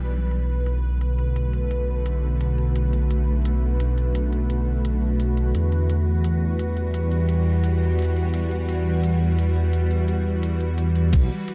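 A tense, string-like drone with vibrato, built-in reverb and sidechain pumping opens alongside a deep, rumbling detuned saw bass with tube saturation over Bm7 moving to Emadd9 in this heavy, cinematic half-time drum and bass excerpt at 172 BPM, where an overdriven electronic kit with crisp, filtered hats and crash cymbal runs under a filter sweep until a knocking, up-front electronic kick lands at 11.1 s in a dark, lightly reverberant mix.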